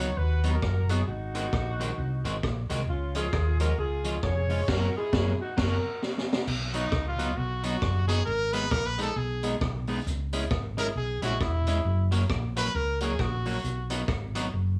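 Cheerful and bouncy, this ska excerpt in B major moves at 134 BPM with a swung 4/4 feel, opening with a smooth-topped horn section carrying the melody over a twangy, slightly broken-up electric guitar with tape echo, a dark, round hollow-body bass sitting up front, and a vintage kit with a punchy kick, high-tuned snare, rim clicks and dark cymbals. After a band accent and a drum fill ending at 6.5 seconds, a brilliant trumpet with vibrato steps forward for a solo from 6.7 seconds as the chords travel through minor shades and return to B. The band sounds as if it is playing live together in a small room, touched by light reverb.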